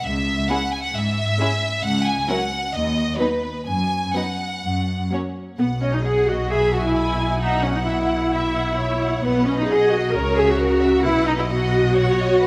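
A violin section carries the melody from the very start over a smooth, even cello section bass line, opening a lively, spirited passage cut from a quick classical-period movement for string orchestra in B major at 132 BPM in 4/4, played with a rubato feel. From 0.5 s a second violin section adds a distant, expressive second line, while a rich, close viola section supplies the accompaniment and sits up front as the most prominent voice in the balance. The leading violins sound focused and lush with a smooth top, and every section is bowed with vibrato. At 5.6 s the music moves into a new section as a clear, intense double bass section joins underneath. The harmony opens on C#m and settles onto B, with E/B, F#5/B and A#dim/C# colouring the later bars, all set in a moderate concert hall reverb.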